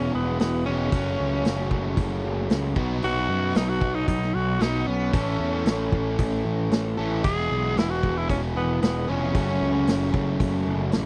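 A growling tenor saxophone carries the melody in this swaggering, sunny classic rock excerpt in E major, its raspy, breathy tone sitting up front with vibrato from the start until 10.7 seconds. Beneath it, a distorted electric guitar plays a bright, double-tracked riff, while a fuzz-laden picked electric bass adds a growly, overdriven low end. A vintage drum kit enters at 0.4 seconds with hi-hat, a tight kick and a medium-tuned snare, its sound saturated and gritty with a rolled-off top. The groove moves at a straight 114 BPM in 4/4, cycling through E, F#m, B and A. The recording is dry and close, with little reverb, in a 1970s studio style that keeps every part up front and present.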